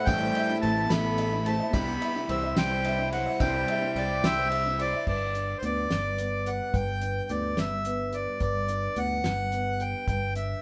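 A live band in a stone room with moderate reverb and a faint mains hum plays this hopeful indie folk excerpt in 6/8 at 72 BPM in G major, moving from A minor and C to G. A reedy, up-front accordion carries the melody throughout, over a picked electric bass and a cloth-damped, thuddy drum kit with a fat snare and dark cymbals. In the opening half, a bowed cello sits in the background, a bright upright piano and a woody upright piano add accompaniment and arpeggios, a shimmering, octave-doubled twelve-string guitar and a veiled, muted string section sit very quietly underneath, and a jingly tambourine sits far back, until at 5.1 s a fingerpicked steel-string acoustic guitar with old strings takes over the accompaniment.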